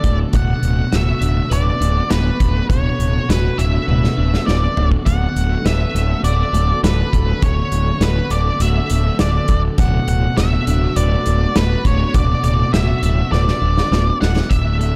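A growly, up-front fuzz bass anchors this soaring, cinematic post-rock excerpt at 102 BPM in D major, with a dark, distorted octave-fuzz lead guitar carrying the melody through digital delay, a bright, twangy twelve-string electric guitar picking delayed arpeggios in the background, a lush, bowed symphonic string section holding sustained chords behind them, and a punchy big rock drum kit adding fills at 3.9 and 13.3 seconds, set in a small room with a warm production.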